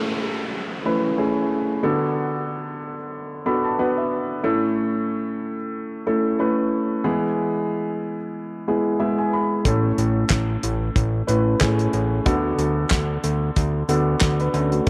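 A light swing on the sixteenths gives this anthemic, piano-driven pop excerpt a relaxed four-four lilt at a moderate tempo. A dark upright piano carries the accompaniment throughout, its mellow, woody tone and long sustain sitting up front as it moves through A, D6 and E chords, with short fills around 3.1 and 8.7 seconds. An electronic downlifter sweeps in quietly beneath the opening. At 9.7 seconds a fat analog bass arrives, thick and saturated with detuned sawtooth and square-wave character and a fast-attack filter pluck. A damped seventies drum kit enters with it: dry and acoustic, with a tight kick, a fat snare, hi-hat and handclaps under a rolled-off top end. A moderate spring reverb with a 2.6-second decay surrounds the whole excerpt, rounding out its warm mood.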